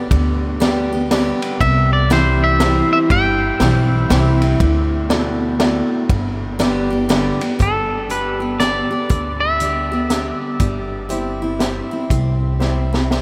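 A dreamy, reverb-soaked mix carries this easygoing, heartfelt honky-tonk and classic country waltz in G major at 120 BPM with a swung 3/4 lilt, where a bright, full-bodied picked acoustic guitar, a woody, thumpy upright bass and a vintage drum kit with dark cymbals, a high-tuned snare and a punchy kick hold the groove, a brilliant upright piano sits in the background until 7.5 seconds and returns at 11.1, and a clean, twangy electric guitar sings the melody up front in two phrases before a drum fill closes this cut from a longer piece at 13.2 seconds.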